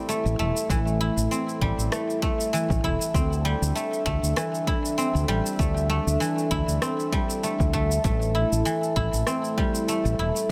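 A lightly swung sixteenth-note feel in 4/4 drives this organic downtempo passage, cut from a longer piece, with an earthy, mystical mood. An overdriven electronic shaker and rim click in a small room reverb set the groove from 0.1 s, and a layered, punchy electronic kick drum, also re-recorded in a small room, joins at 0.7 s. Up front, a bright guzheng played with fingerpicks rings out silvery arpeggios through tape echo, while a direct and amped fretless electric bass sits close in the mix with sidechain pumping. Beneath them, a mellow analog pad built from sawtooth and triangle tones with a sub octave holds slow-attack chords with chorus and its own sidechain pumping. The harmony moves from Am7 to D5 and returns to Am7 at 8.0 s, inside a light overall reverb.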